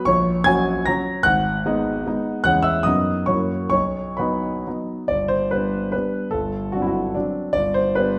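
A dark, natural-sounding production places the piano up front within a wet recital hall reverb that lingers for about 1.4 seconds. This short cut from a longer classical piece is a romantic dance in triple time, graceful and proud, shaped by dotted rhythms and a free, rubato feel. A concert grand plays alone throughout, its tone worn and warm, with a deep bass that reaches down low while the treble climbs high above. The opening phrases move through a chain of chords before settling onto a home chord at 3.7 seconds. At 5.1 seconds the harmony shifts to a new tonal centre, and the dance carries on briefly over a G in the bass until the piece is cut at 8.2 seconds.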